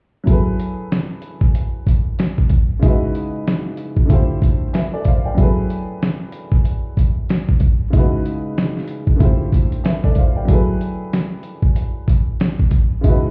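Boom-bap hip hop with a tough, gritty mood and a swung sixteenth-note feel, in a roughly 13-second excerpt cut from a longer piece. A dusty, sampler-style drum kit of thumpy kick, medium-tuned snare and hi-hat sits up front with compressed 12-bit grit and a small-room sound. Behind it, a dark, woody upright piano with audible action noise and a slightly detuned, boxy tone cycles through minor eleventh chords, all heard muffled as if through a wall, with club reverb and vinyl crackle.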